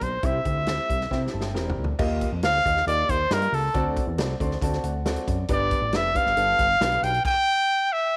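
Uplifting and warm, this uptempo 1960s-style soul excerpt moves at 137 BPM in a straight 4/4. A clear, up-front trumpet with light vibrato carries a jazz-style solo melody over chords that move from C through Ebadd9 and D7 to G. A woody, vintage upright piano adds fills at 1.1 and 4.2 seconds, a fat, saturated analog bass with a nasal filter pluck holds the low end, and a natural studio-room drum kit with a punchy kick and medium-tuned snare plays a fill into the new section at 2.0 seconds, all set in light reverb.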